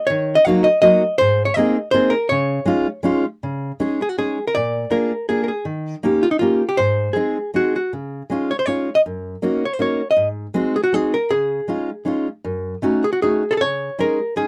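A straight-feel 3/4 waltz at 160 BPM drives this nostalgic, charming musette excerpt in Db major, cut from a longer piece. A miked and amplified hollow-body archtop guitar carries the melody up front with a dark, clean, picked electric tone, while a fingerpicked steel-string acoustic guitar adds warm auditorium-style accompaniment, audible finger squeak and all. The two guitars move from a brief opening into a longer second section at 3.4 seconds, with chords such as Bb7, Eb7, Gb6 and Gbm6, all captured in a dry, close 1970s-style studio sound with light reverb.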